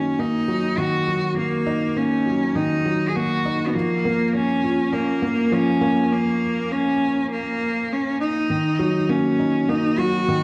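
A wet echo-chamber reverb gives this short electronica fragment an intimate yet roomy sound, set at 101 BPM in a straight 4/4 with a tender, hopeful mood. A felt-muted upright piano, dark and mellow with audible action noise, carries a riff up front while a single bowed cello sings a clear, smooth melody with vibrato over D#m and A#m harmony. The build-up gives way to a break at 6.1 seconds before the drop lands back on D#m at 8.5 seconds.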